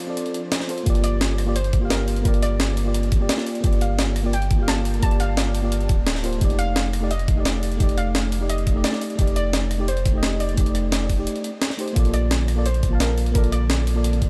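A dreamy, lush liquid drum and bass passage opens on a soft pluck melody and a dark, mellow FM electric piano, both with chorus and tape echo, over a faint breathy pad and gritty, pitched-up jungle breaks of hi-hat, rim click and snare. At 0.9 seconds the drop lands with an overdriven, knocking electronic kick and a deep, up-front sine sub bass, as the chords move from Gm7 to F13. The airy pad returns at 12.0 seconds on a Bbmaj7, all under a light reverb.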